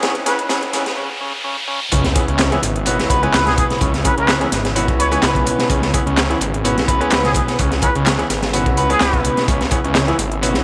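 Opening on a C#m7 chord, this raw, funky breakbeat excerpt at 127 BPM in C# minor sets a gritty, saturated acoustic breakbeat kit up front, a background garage kit of metallic hats and handclaps, a buzzy overdriven combo organ riff, brilliant baby grand piano stabs, and very quiet sustained chords from a round tonewheel organ with fast rotary speaker, while a riser and sub drop build through a filter sweep and break until the drop at 1.9 s brings in a thick, menacing detuned saw bass, and after a brief blip at 0.3 s, from 3.5 s a breathy plunger-muted trumpet with wah-wah and vibrato plays a whispered jazz solo in the background, all within an echo-heavy mix with plate reverb and small room ambience.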